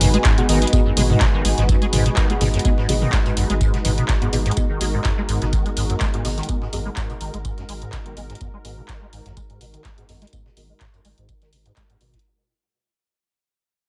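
Acid house at 125 BPM in G# minor with a light swing, raw and gritty, resting on a single G#m7 chord throughout this short cut from a longer piece. A squelchy, resonant square-wave acid bass riff runs under a filter sweep with tube saturation, chorus and delay, over a round triangle-and-sine bass on G#1. A detuned sawtooth pad and a deep moody ambient pad fading out in the background both pump against the sidechain, and soft, dark chord stabs with phaser and delay enter at 0.4 seconds. A punchy drum machine of handclaps, hi-hat and toms re-recorded in a large room and a very quiet, tape-warm sampler kit of hi-hat, snare and tambourine play from the start. An up-front analog kick joins them at 0.2 seconds, all under light reverb as the whole mix fades out.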